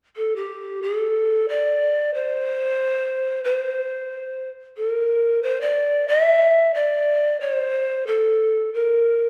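Breathy cane pan pipes play alone from 0.2 to 9.3 seconds in this languid, relaxed Hawaiian passage, moving between G4 and E5 at 91 BPM in 4/4 with a gentle swing on the eighths. Their straight tone, soft attack, audible chiff and rolled-off highs sit up front, bathed in a wet recital-hall reverb with a 1.6-second decay that suggests a church or concert hall. The passage is cut from a longer piece.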